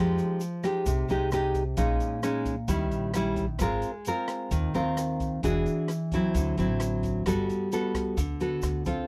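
A straight 4/4 bossa nova pulse at 131 BPM drives this relaxed, breezy fragment of a longer piece, tuned to A4 = 438 Hz. Up front, a full-bodied, fingerpicked nylon-string guitar carries the harmony from Fm9 through Bbm7, Eb7b9 and Ab69 to E9 and D9, then shifts to Gmaj9 as a new section opens at 7.3 seconds. Beneath it sits a woody pizzicato upright bass, alongside an open jazz kit of hi-hat, rim click and boomy kick in a small room, plus a grainy, bright egg shaker in the background, all in a dry, close 1970s-style studio sound with light reverb.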